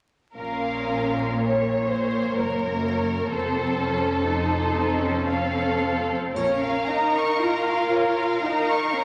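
A wet, reverberant scoring-stage sound with a faint vinyl crackle frames this short cut from a slow romantic orchestral movement in Bb minor, moving in a rubato 3/4 at about 53-66 BPM with a yearning, elegiac mood. A violin section carries the melody from a distance in the background, while a second, lush violin section up front plays a second line. The violas supply the accompaniment with soft attacks and expressive portamento. Beneath them, a rich cello section and a dark, woody double bass section, both bowed with vibrato, hold the bass until 7.2 seconds. The harmony moves from Bb minor to F7 and back to Bb minor at 6.4 seconds, where a close, dry triangle enters in the background.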